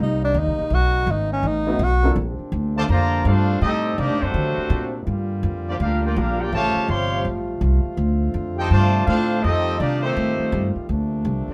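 Jazz at a swinging 165 BPM in 4/4 and B-flat major, this brassy excerpt is cut from a longer piece and opens on a short tenor saxophone solo, breathy and whispered, with scooped notes, a soft attack and an intimate vibrato that sits up front for its first 2.1 seconds. Beneath it, a close-miked trombone section holds tight, brilliant sustained chords throughout, while a pizzicato upright bass with a woody tone and steel strings anchors the low end up front. A slightly detuned upright piano, complete with audible action noise, adds a brief natural touch of accompaniment around 1.7 seconds. From 2.8 seconds a bright trumpet section takes over the melody with light vibrato, carrying a roomy, distant character even as it stays forward, and a mellow second trombone section adds a gentler second line. The harmony moves through rich jazz colours such as Bbmaj9, Am7b5, D7b13 and A7alt before settling back on Bbmaj9, all framed by a moderate studio reverb.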